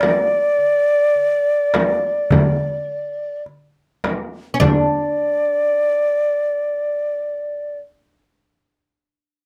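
A bansuri melody leads this festive excerpt of an Arabic maqam ensemble, sitting up front with a breathy, hollow bamboo tone, vibrato and tongued notes around D5. Beneath it, a fretless oud carries a second line between C#4 and D4, its plectrum-plucked double strings sounding woody and close. The piece moves in 10/8 at 104 BPM counted in eighths, with a straight feel. A small clay-shell darbuka played with soft hands adds high, compressed and slightly saturated strokes, while a deep, large frame drum carries the sound of a big room. Both drums stop at 5.1 seconds, and the bansuri and oud carry on together until 7.8 seconds, captured with close, detailed microphones and light reverb that give the whole a warm character.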